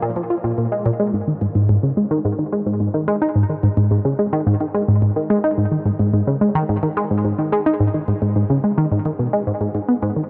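In a straight 4/4 pulse, this hypnotic, expansive ambient cut from a longer piece features a lone tight, driving sequenced synth, its sawtooth tone shaped by a filter pluck with a fast attack, sustained and evolving through chorus and tape echo, sitting up front within a huge ambient reverb from 0.0 to 10.2 seconds.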